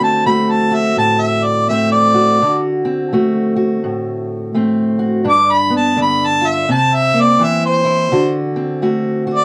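Acoustic country blues with a swaggering, laid-back mood, this 9.4-second excerpt moves at 84 BPM in 4/4 with a swung eighth-note feel. A mellow harmonica carries the melody throughout, taking a jazz-style solo with scooped notes that sound distant and roomy yet sit up front. Beneath it, a fingerpicked steel-string acoustic guitar with a dark, boxy parlour tone provides the accompaniment, also placed up front. The harmony rests on D7 before shifting to G7 at 5.3 seconds, C7 at 6.7 seconds and back to D7 at 8.1 seconds. The production is warm and shadowy, set in a short, wet booth ambience.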